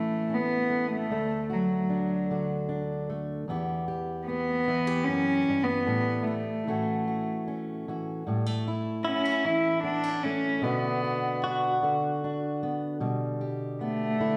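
This acoustic folk-pop ballad excerpt moves at 76 BPM in a gentle 3/4, tender and intimate in mood. A bowed cello carries the solo line throughout, played sul tasto with a soft attack and a pure, floating tone that sits up front. A dark, fingerpicked steel-string acoustic guitar supports it with close accompaniment over chords centred on A, while a clean, compressed electric guitar adds quiet tremolo arpeggios from 9.0 to 13.4 seconds, all set in the lush reverb of a church or concert hall.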